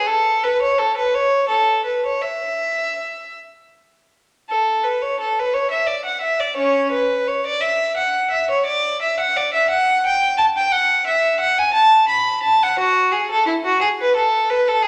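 A single bowed violin opens and plays alone throughout this serene, flowing baroque-style suite movement, moving in 6/8 with gentle rubato. Its clear, smooth tone carries a light vibrato and sits up front, with the opening phrase beginning again at 4.5 s and unfolding until 14.9 s, where this cut from a longer piece ends. A recital hall's reverb surrounds the violin with a lingering glow.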